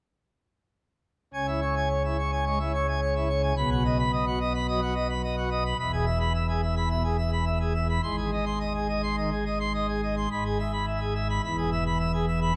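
Bathed in a wet concert hall reverb that rings for 2.2 seconds, this stormy, majestic fragment of a classical organ toccata in C# minor at 107 BPM in 4/4 features a solo pipe organ on full plenum with mixtures, its brilliant, romantic voicing placed up front and spanning E1 to B#5 from 1.3 s to 12.5 s as the harmony moves from C#m through B, E and G# before arriving on E.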